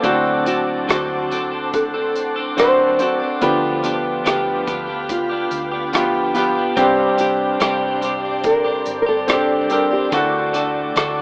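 A clear, intimate grand piano opens this heartbroken pop ballad at a slow 72 BPM, joined from the start by a shimmering, ethereal pad in the background, bright twelve-string electric guitar arpeggios with tremolo and tape echo, a dark, round hollow-body bass, and an acoustic studio kit with a punchy kick, hi-hat and rim click. At 0.5 seconds a small, thumb-plucked nylon-string guitar carries the melancholic melody over chords moving from D7 through G7/D and Csus2 to D. The short cut sits in a moderate plate reverb, with the rough feel of a home demo heard through an AM radio.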